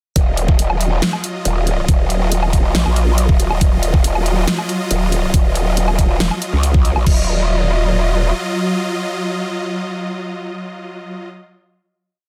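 A half-time 139 BPM beat in 4/4 drives this short, menacing and chaotic heavy wobble dubstep piece in Eb minor, with an overdriven, knocking electronic kick up front and a layered kit of huge snare, bright closed hats, crash and low woodblock. A growling, saturated growl bass with chorus and overdrive snarls through modulated phrases whose wobble speed keeps changing, while lush, detuned supersaw chords pump against the sidechain on an Ebmadd9 harmony. The drums drop out at 7.2 s and the bass at 8.3 s, leaving the huge sawtooth pad to hold the final chord until 11.3 s in a dense, dry, heavily limited mix.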